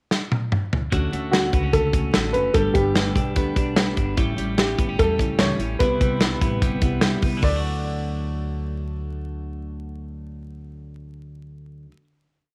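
A punchy drum fill opens this bright, youthful jangly indie pop piece, and at 0.9 seconds a full-bodied fingerpicked steel-string acoustic guitar, a twangy, clean twelve-string electric guitar with a rolling arpeggio pattern and a woody pizzicato upright bass join the drums' brisk backbeat, while from 1.3 seconds a dark, worn, slightly detuned upright piano with audible action noise carries a phrase-like melody through a Dmaj7 to Cmaj7 verse that settles on a closing D chord, set in light small-room reverb over a layer of vinyl crackle.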